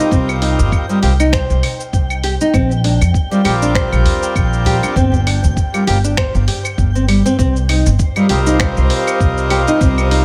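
Harmonium breathes in reedy, nasal chords under bright fingerpicked nylon-string guitar arpeggios, both trailing digital delay, while a twinkling granular shimmer with slow attack and long release sparkles in the background of this mystical, hypnotic organic downtempo cut in C minor at 99 BPM, swung on the 16ths. From 0.1 seconds a woody pizzicato upright bass sits up front, pumping against a gritty, thumpy electronic kick and a dusty, tape-warm sampler kit of cabasa, claves, finger snaps and hi-hat. A deep, saturated udu murmurs in the background from 0.6 to 5.5 seconds as the harmony moves from Cm7 through Bb6 and G7sus4 back to Cm7 in a light, small-room ambience.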